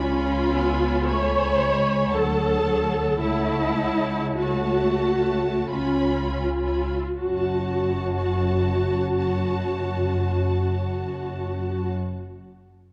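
Melancholic and solemn, this brief passage from a slow romantic movement for string orchestra moves in a rubato 3/4 in F# minor, drifting between 38 and 58 BPM and slowing down across its first 7.2 seconds. All five string sections play throughout, with the first violins carrying the melody high in the register in a focused, lush tone with vibrato, while the second violins trace a smooth, even second line beneath them. The violas supply a clear, up-front accompaniment that sits more prominently in the balance than either violin part, and the cellos and double basses anchor the bass, the basses adding expressive portamento. The harmony leans on C#7 and Dmaj7 before resolving to F# minor at 7.2 seconds, where a second section begins. A moderate scoring-stage reverb gives the ensemble depth, and a worn, warbling cassette-tape character with pitch drift colours the whole recording.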